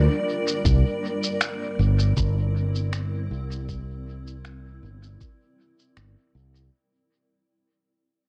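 Deep and hazy, this ambient dub fragment at 79 BPM with a light swing on the 16ths fades out across its 6.7 seconds as a cloudy, detuned granular pad with a bright, blurred edge sustains Gm7 into C9 in its own reverb, a fingered electric bass sits up front with a direct, amped tone, muffled, pitched-down shaker and finger snaps drift through dub echo, and a thumpy, compressed electronic kick enters at 0.7 seconds and drops out at 5.4, all set in an echo-heavy mix with light reverb.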